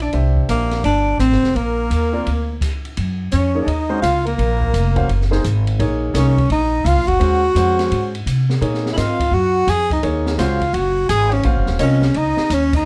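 Swinging in 4/4, this hypnotic, intense modal jazz fragment sets a close-miked tenor saxophone melody beneath a breathy, subtoned alto saxophone second line, with woody pizzicato upright bass up front, an open drum kit of dark cymbals, high-tuned snare and boomy kick, and an intimate concert grand piano with audible action noise accompanying from 0.1 seconds, heard in a light reverb before the band strikes an accent at 12.7 seconds.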